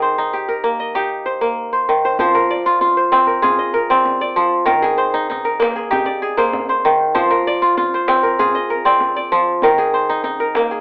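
A straight 4/4 pulse at 97 BPM carries this reflective, hypnotic piece of West African traditional string music in F dorian, cut from a longer performance. The kora opens alone, its fingerpicked arpeggios ranging from Eb3 to Eb5 with a bright, crisp, ringing tone placed up front. At 2.2 seconds a deep djembe joins in the background, played with soft hands and carrying a live-room quality. The harmony alternates between Eb and Fm, settling on Eb5 at 9.6 seconds. A moderate small-room ambience surrounds the performance, and the whole recording has a filtered, telephone-like sound.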